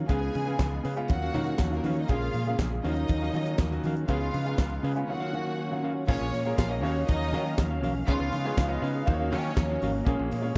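Driving and sultry, this short disco cut from a longer piece moves at 120 BPM in a straight 4/4, set in Eb minor and cycling through Db7, Ebm9 and Bbm7 chords. A tight funk drum kit sits up front with a high-tuned snare, tight kick, hi-hat, handclaps and crash cymbal, while a fingered electric bass underpins it with a warm, direct tone. A clear grand piano plays accompaniment with audible action noise, joined by a mellow, clean electric guitar in the background, its dark tone touched by spring reverb. Two bowed string sections add lush, vibrato-rich color: a woody, shadowy section holds sustained chords in the background, and a focused, smooth-topped section carries a second line from 0.1 s to 9.8 s. Very quiet congas with a bright, thin skin sound distant, as if in a large room, and a brief break at 5.1 s leads into the second section at 6.1 s. The overall sound is dry and close, in the manner of a 1970s studio recording.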